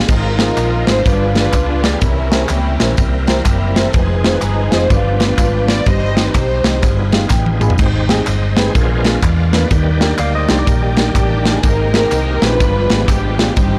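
A swung 125 BPM groove in 4/4 drives this fervent yet solemn uptempo gospel passage, cut from a longer piece, with an airy, polished studio drum kit up front built on a tight, softly clipped kick, a medium-tuned snare, ride, crash and toms. A dark, round hollow-body electric bass with transformer saturation sits equally forward, while close, dry tambourine, egg shaker and group handclaps tick along in the background. Behind them, a woody, slightly detuned upright piano comps with long sustain, and a shouting tonewheel organ holds full chords through overdrive, chorus vibrato, key click and a slow rotary speaker. An intimate bowed string section carries the melody with soft-attack sul tasto vibrato, drops out at 6.8 seconds as the piano and then the drums fill, and returns at 11.2 seconds just after a twangy, compressed clean guitar slips in a brief second line at 10.2 seconds. The harmony moves through rich, tense chords such as Ab69, G7b9 and Abmaj9 under light reverb, and the whole recording is blown out and heavily overdriven.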